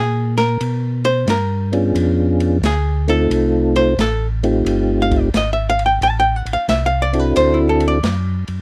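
A swung 4/4 groove drives this greasy, soulful soul jazz organ trio fragment, where a dark, clean hollow-body archtop guitar sits up front with a solo over a round, key-clicking tonewheel organ bass line turning through a slow rotary speaker, an open acoustic drum kit with dark cymbals and a boomy kick enters at 0.4 seconds, and a soft, flute-like percussive organ melody with chorus vibrato joins at 1.7 seconds, all captured in a dry, close 1970s-style studio sound.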